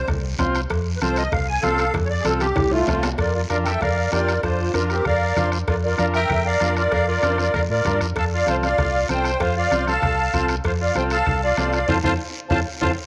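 Sunny and joyful, this cumbia excerpt at 193 BPM opens with a reedy, shimmering musette accordion solo up front over a round, dark fingered electric bass, soft-beater bombo, low-tuned congas, metal-shell cowbell and timbales, raspy guiro and a buzzy vintage combo organ, before a gritty, growling trumpet with light vibrato adds a second line from 3.2 seconds, all set in a moderate plate reverb and capped by a drum fill and band accent from 11.9 seconds.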